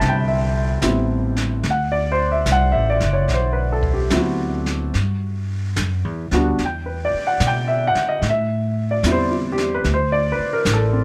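Swung eighths in 4/4 carry this romantic, late-night jazz ballad excerpt, where an up-front baby grand piano with a natural, short-sustained tone comps through Am7, D13 and G6 changes over a woody, growly pizzicato upright bass, while a distant, roomy brush kit with a boomy kick and medium-tuned snare sits low beneath them in light reverb.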